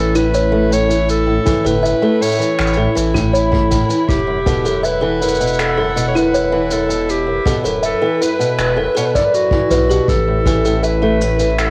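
Delicate and hopeful, this short folktronica excerpt at 80 BPM in A mixolydian sets a breathy, bright clarinet melody over a distant, gut-string quartet, woody fingerpicked arpeggios from an old ladder-braced acoustic guitar, a round, deep analog bass, a tinkling, slightly out-of-tune music box with 12-bit grit and tape echo entering at 0.2 s, shaker and finger snaps, and a tight, rolled-off kick from 1.5 s, all moving from A to Emadd9 at 4.1 s and back, with the home-cassette recording carrying vinyl crackle.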